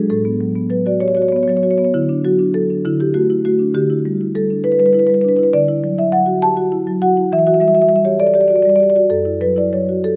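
A close, detailed recording places a solo marimba up front in a concert hall whose moderate reverb, with a 2.2-second decay, gives each note a gentle halo. This is a contemporary classical piece for the marimba alone, hypnotic and flowing, moving at a slow 67 beats per minute in a lilting 6/8 with an elastic, rubato feel. Played with soft mallets, the instrument sounds woody, round and mellow, and it spans a broad compass from the low F#2 up to A5. The harmony drifts through open, colorful chords, from A6/9 and D to Dadd9, Em7 over D, Em9 and finally F#m7 near the 9.1-second mark. The marimba plays throughout this brief passage, which is cut from a longer work and lasts just over ten seconds.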